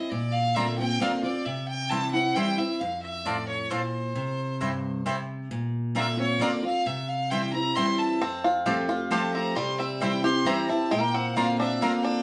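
A clear, lightly vibrato fiddle with a smooth top solos up front from the start over a picked steel-string acoustic guitar with audible finger squeak, joined at 0.6 seconds by woody, double-strung mandolin stabs and at 8.2 seconds by twangy, fingerpicked banjo arpeggios, in a virtuosic, rustic bluegrass piece in 3/4 at 133 BPM in C mixolydian, tuned to A4 = 445 Hz and cycling through Bbadd9, C and F, played live in one room with a wet studio reverb in this short cut from a longer piece.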